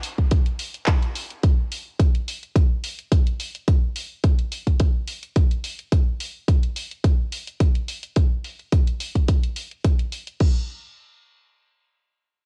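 Nu-disco with a feel-good, sunny mood: a drums-only excerpt at 107 BPM in 4/4 with a light swing on the sixteenths. A layered pop drum kit of crash cymbal, handclaps and warm hi-hats runs from the start, joined at 0.2 seconds by a punchy, up-front electronic kick that dominates the mix, and both parts carry studio reverb and a cassette-tape colour until they stop at 10.5 seconds. The overall sound is fairly dry, with the homespun grain of a cassette recording made at home.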